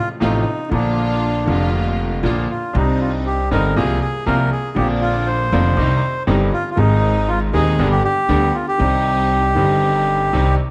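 A reedy, dark bandoneon opens this passionate, dramatic tango fragment in C minor, and from 0.2 seconds a clear concert grand piano with deep bass joins it, along with a woody, thumpy pizzicato upright bass up front and bowed, lush string stabs set lower in the mix. The tempo sits around 119 BPM in 4/4 but moves with a rubato feel. The piano's short sustain sits in a moderate large-studio reverb under a layer of vinyl crackle, as the harmony travels through Bb, Cm, Ab and G before settling on Cm.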